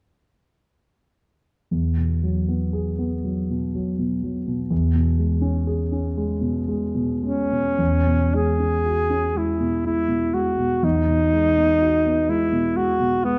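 Dreamy and luminous, this fragment of an impressionist classical duo drifts at 59 BPM in a rubato 3/4 in E major, with the concert grand entering at 1.7 seconds to lay down dark, mellow chords over a deep bass. At 7.2 seconds the alto saxophone takes up the melody up front, its smooth top and light vibrato carrying a classical solo voice until the close at 13.4 seconds. Added-note harmonies centred on E and a recital hall's lush reverb give the whole a warm, hazy glow.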